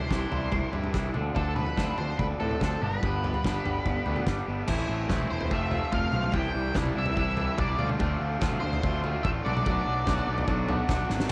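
A cool, bittersweet indie rock passage in straight 4/4 at 145 BPM opens with a dark, distorted octave-fuzz lead guitar carrying the melody over a loose indie drum kit, a crunchy overdriven rhythm guitar and a clean, twangy electric guitar, with a fuzz-soaked bass joining at 0.1 seconds. The drums sound acoustic and up front in a pumping studio room, with a punchy kick, a medium-tuned snare, toms and dark crash cymbals under a rolled-off top. The picked bass is bright, growly and overdriven, sitting forward in the mix, while the bright crunch guitar stays in the background with a subtle chorus and the warm twangy guitar plays its riff cleanly. Tape echo trails the lead's distorted line, and studio reverb surrounds the band. The chords move from Cadd9 through Dm7 and G, then shift at 4.7 seconds into a new passage of Am, F, Cadd9, Dm7 and Bm7, and a drum fill at 11.1 seconds closes this excerpt cut from a longer piece.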